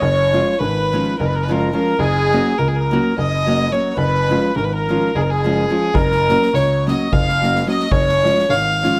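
Close, detailed microphones and a light reverb give this Balkan wedding-band excerpt an intimate, present sound, cut from a longer piece and driven by an exuberant, wild spirit. It moves in a straight 7/8 at 213 BPM counted in eighths, in F# major, with the harmony rocking between F# and C# over an F# bass. A single bowed fiddle carries the melody up front, its gut-string tone nasal and reedy with a boxy edge, while an accordion sits in the background on a second line in the same register, full and rich. A dark grand piano holds the bass low and mellow with long sustain, and a small-sounding nylon-string guitar, fingerpicked with audible finger squeak, fills in the accompaniment from 0.3 seconds. At 5.9 seconds a street-band drum kit joins in the background with a boomy kick and a medium-tuned snare, its sound airy and polished in a big room.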